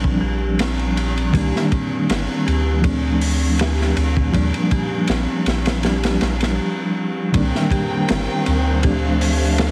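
Trip hop in C dorian at 80 BPM with a lightly swung 16th feel, this brooding, smoky excerpt pairs a reedy electric piano with fast tremolo and tape echo, a round, soft dub sub bass with tube saturation, an up-front crunchy breakbeat kit with a punchy kick and dark cymbals, and an eerie, inharmonic detuned synth bell playing chorused arpeggios, until after a break at 6.6 seconds a lush bowed violin section enters at 7.3 seconds with sustained chords and vintage 12-bit sampler grit, the mix wrapped in vinyl crackle, small-room ambience and a heavily compressed radio sound.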